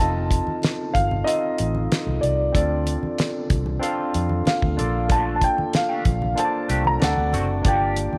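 A warm baby grand piano carries the melody with a slapback echo over a barky, lightly overdriven tine electric piano, round foam-muted fingered bass, a dry 70s drum kit with a fat snare and tight kick, very quiet low-tuned congas, and a slightly broken-up wah guitar riff entering in the background at 5.1 s, all in a silky, bittersweet 1970s-style soul groove at 94 BPM that moves from F7 through Dm7 and Bbmaj7 to D7 and Gm7 within this short excerpt bathed in moderate plate reverb.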